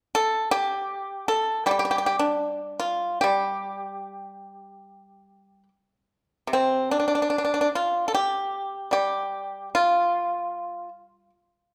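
A solo pipa, played with fingerpicks, sits up front with a dry, percussive attack, moving between C3 and A4 in the G shang mode from 0.1 to 11.3 seconds. This Chinese traditional piece for plucked strings feels elegant and serene, its rubato phrasing drifting loosely around 75 BPM in 4/4. A moderate large-studio reverb gives the space a gentle bloom, and the passage is cut from a longer piece.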